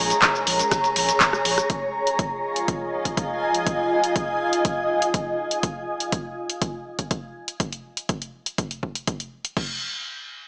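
Heard through a small-speaker filter and a lush hall reverb, this driving, hypnotic acid house excerpt in F minor runs at 122 BPM in a straight 4/4. A detuned, blurred granular cloud pad with its own reverb pumps up front against a round, deep analog bass, while a very quiet, gritty sampler-style kit adds ride and snare; bass and kit both drop out by 1.6 s, as the chords move from Bbm7 to Fm7. A punchy, dry analog drum machine with crash, handclaps, hi-hat, rim click and shaker drives on with a dry electronic kick, both set in studio reverb, and they carry the groove alone after the pad fades at 5.6 s.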